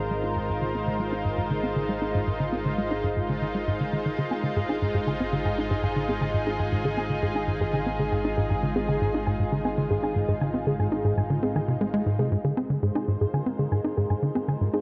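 Luminous and expansive, this excerpt of ambient, sequencer-driven space music moves at 118 BPM in a straight 4/4, set in A-flat lydian over an A-flat 6 chord. A lush, thick unison pad sits up front, holding bright, airy sustained chords with a soft attack and chorus. Beneath it, a tight, punchy sequencer bass drives a sawtooth riff through analog delay. A low analog drone hums on a single A-flat, evolving through pulse-width modulation and ring modulation, with a filter sweep running across it until it stops at 12.3 seconds. At 4.2 seconds, a soft, round pluck enters with gentle arpeggios that sit darker and further back, colored by chorus and delay. The whole recording carries a worn, warbling cassette character with drifting pitch, all wrapped in a moderate plate reverb.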